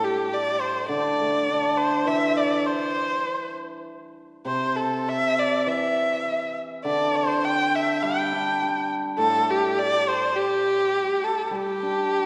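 A wet concert hall reverb with a 2.1-second decay surrounds this short recording, and the room is heard from further back even as both instruments sit up front. It is Chinese traditional music for a chamber ensemble, pastoral and festive in mood, moving at about 102 BPM in 4/4 with a rubato feel in the G zhi mode. A single bowed erhu carries the melody between G4 and G5, its nasal, focused tone shaped by vibrato and portamento. Beneath it, a hammered dulcimer supplies the accompaniment from A2 to G4, its shimmering, ringing strings adding an acoustic glow. Both parts play together from the start to the end at 12.3 seconds, in a passage cut from a longer piece.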